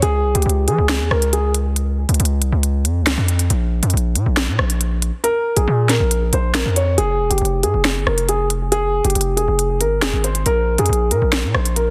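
Drill hip hop at 138 BPM with a half-time feel, cut from a longer piece, with a cold, dark mood over a Db, Bb5, Fm and Bb5 progression. A distorted, saturated 808-style bass with a noisy, fast-attack edge runs throughout beside an electronic drill kit of sharp snare, crisp hi-hats, rim clicks and finger snaps. Up front, a mellow, boxy grand piano with audible action noise carries the melody through a low-pass filter and tape echo, sounding from 0.0 to 1.5 seconds and returning at 5.2 seconds, all within a dense, heavily limited modern master.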